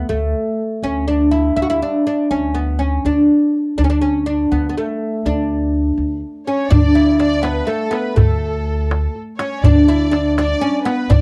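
This dry, close recording has the intimate sound of a 1970s studio, and it is cut from a longer Persian modal ensemble piece in a straight 6/8 at 82 beats per minute. The mood is passionate and festive from the opening moment, when a bright, plectrum-plucked fretless oud carries the melody up front. Its double strings give it a woody, deep ring, while a pizzicato upright bass with steel strings holds a low D beneath it. At 6.5 seconds a lush bowed violin section enters as a second line, smooth and even with vibrato. It sits well behind the oud and bass. A tight tombak played with soft hands joins at 6.7 seconds, adding close, warm percussion as the passage moves into its second section.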